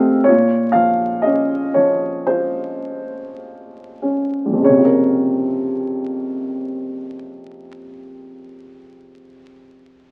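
Classical, lyrical solo piano in Bb minor, wistful and dark, drifting with rubato between 48 and 65 BPM, where a woody, open upright piano with short sustain sits up front, opens on a Bbmadd9 chord at 0.3 seconds and slows through the first 4.6 seconds in a modest small-room reverb, all heard through the crackle of a very old 78 rpm record in this brief cut from a longer piece.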